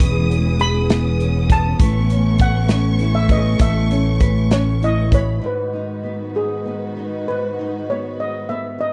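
Swaying in a slow 6/8 at 66 BPM, counted in dotted quarters, this romantic pop ballad excerpt rides on a loose indie drum kit of kick, snare and hi-hat, its tight kick and medium-tuned snare sitting up front with a rolled-off top and a small-room character. A bright, amped fretless electric bass with a growly edge is equally forward, while a double-tracked nylon-string guitar adds small, fingerpicked accompaniment. Over them a metallic, shimmering steel pan carries the airy lead melody, struck with medium rubber sticks. A close symphonic string section holds lush, warm sustained chords with a soft attack and expressive vibrato, and a distant, rich studio violin section traces a high second line above. The harmony moves from E6 to Aadd9, then shifts to G#m7 at 5.4 s, where the drums, bass and violins fall away and the pan, guitar and strings carry on alone until 8.9 s, all captured in a dry, close 1970s-style studio sound.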